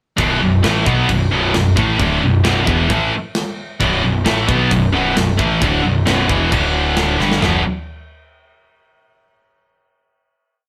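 Heavy metal at 132 BPM in B minor, heavy and relentless, with a scooped, high-gain guitar out front playing a double-tracked power-chord riff while a fuzzy, punchy bass doubles it in driving eighth notes and a tight drum kit with bright cymbals and a tight kick holds a metal drive groove. The band sounds as if playing live together in one studio room with moderate reverb, moving from B minor through D5 and G5 before a drum fill at 7.2 seconds leads into a final B5 chord that rings out from 7.4 to 9.2 seconds.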